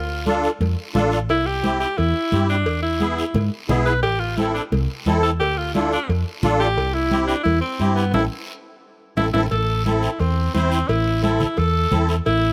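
Cumbia with a danceable, fiery mood, led by an edgy, up-front alto saxophone with pop-style vibrato over a dark, round hollow-body electric bass, a shimmering, reedy musette accordion, a raspy guiro, and bright thin-skinned congas and ringing cowbell and timbales in the background, all in light reverb, with a band accent at 8.1 seconds before a new section arrives at 9.5 seconds.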